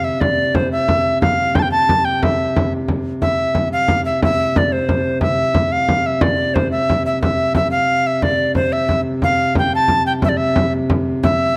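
Medieval dance in 6/8 at 120 BPM in C major, festive and ancient, with a bright, airy tenor recorder carrying an up-front melody in a straight, chiffy tone over a breathing, mellow harmonium drone on C3, while a frame drum played with soft hands enters at 0.2 s, close and dry, and the sound is set in a moderate recital hall reverb captured by close, detailed microphones.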